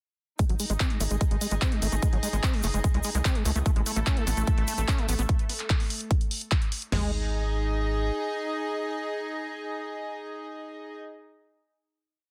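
Driving and hypnotic, this short psychedelic trance piece runs at 147 BPM in a straight 4/4, with a groove built on G#5 and A5 chords. A big-room electronic drum kit sits up front, its punchy four-on-the-floor kick, huge snare, floor tom and crash layered with programmed closed and open hi-hats and handclaps on the backbeat. Underneath, a tight sequencer bass drives galloping sixteenth notes with a plucky sawtooth-and-square tone. Above it, a squelchy, gritty acid bass riff with accents and slides carries a resonant filter sweep, digital delay and sidechain pumping, while a grainy egg shaker plays hand-played sixteenths quietly in the background. A rich, floating string section of bowed ensemble chords shifts slowly throughout with its own pumping, and a detuned, warbling wavetable pad briefly holds a high note with chorus between 3.9 and 5.3 seconds. The groove gives way at 6.9 seconds to a final chord where the strings ring on in light digital ambience until 10.9 seconds, all within a dense, heavily limited modern master.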